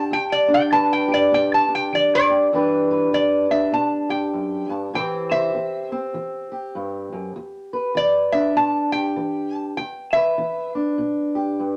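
A lightly swung 4/4 at 99 BPM carries this mournful, brooding acoustic country blues in E minor, cut from a longer piece. Up front, a lap resonator guitar played with fingerpicks and a slide carries the melody in a bright, metallic, nasal voice, taking a steel-bar solo over the opening 2.5 seconds before falling silent at 10.7 seconds. Close beside it, a dark, boxy parlour steel-string guitar fingerpicks the accompaniment through Em7 and Am7 until 11.8 seconds, set in a moderate studio reverb.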